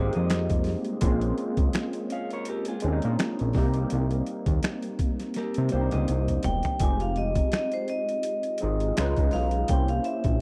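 A late-night, introspective neo-soul R&B cut in F minor at 83 BPM opens with a barky, overdriven tine electric piano under phaser, a fat sawtooth analog bass and a slightly broken-up, lo-fi electric guitar second line that stops at 6.8 s, while a gritty, pitched-down boom bap sampler-style kit with thumpy kick, snaps and toms plays a fill from 5.4 s before a dark, ringing vibraphone melody enters at 6.4 s, set in a dry, close 1970s-style studio sound.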